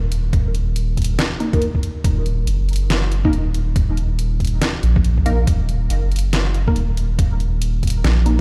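Heard through a big sound system in a bare room, this dark, meditative deep dubstep fragment in Eb minor moves at 140 BPM with a swung half-time feel, built on a round, soft, up-front sub bass of triangle and square waves from the start, a muffled, thumpy, pitched-down electronic kick, an overdriven, layered electronic kit of hi-hat and deep snare, and, from 1.4 seconds, a muted, detuned sawtooth chord stab with a mellow filter pluck, phaser, analog chorus and dub echo.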